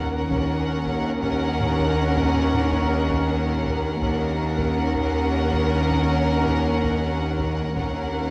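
High, floating violins carry the melody of this eerie, tense suspense cue, bowed sul tasto with a soft attack that reaches up to Gb5, while a second violin line sits beneath them around Bb4 in the same pure, close tone. The piece moves at 80 BPM in a straight 5/4 over a single Ebm7 chord in Eb minor. A dark, lush viola section with vibrato fills the middle as accompaniment, its woody sound smoothed at the top, and a rich cello section and a shadowy double bass section hold the low end around Eb2 in the background. Beneath the strings, a vintage analog drone on Eb2 blends sawtooth and pulse-wave tones, evolving with a slow attack, chorus and a long release. A very quiet taiko ensemble struck with hard sticks enters at 0.3 s, close and dry against the strings. The whole 8.3-second fragment, cut from a longer piece, sits in a damp stone room and carries the worn, warbling pitch drift of old cassette tape.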